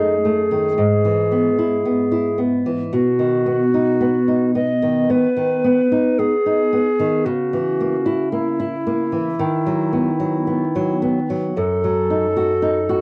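A slow, rubato 4/4 at 56 BPM gives this lyrical, serene romantic duo, cut from a longer piece, an unhurried sway, tuned slightly high to A4 = 441 Hz. A tenor recorder carries the melody between E4 and D#5 with an airy, woody, straight tone, tongued notes and a clear chiff. Fingerpicked classical nylon-string guitar accompanies it through a chord line moving from D#dim/F# through E/G#, B, A#dim/C# and B/D# back to D#dim/F#. Both instruments sit up front across all 13.0 seconds in a moderate studio reverb, captured as a home recording on cassette.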